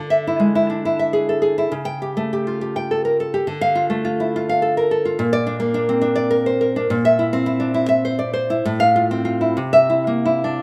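Wistful and passionate, this short fragment of a longer romantic piece for solo classical guitar unfolds in a flexible, rubato 6/8, its warm, fingerpicked nylon-string tone sitting up front in a small room with light reverb and a rough home-demo sound as the harmony drifts from E7/D through A7/C# to Dm, then on to Bb, C7/Bb and F/A before settling on C7.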